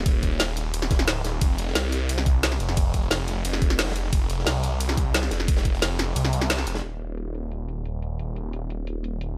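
A straight 4/4 beat at 177 BPM drives this aggressive, futuristic stretch of dark technical drum and bass, built on an overdriven, knocking electronic kick and an up-front drum and bass kit whose woody snare, bright hats and ride cymbal are overdriven and low-pass filtered, all within a small room ambience. Beneath it a very quiet, gritty breakbeat kit with a rolled-off top adds a dark, smooth layer, while a thick, swirling detuned saw bass, saturated and phased, sits up front between Eb1 and C2. After a band accent at 6.5 seconds the breakbeat kit stops at 6.8 seconds, leaving the bass and the main kit, whose drums carry a filter sweep until 9.4 seconds.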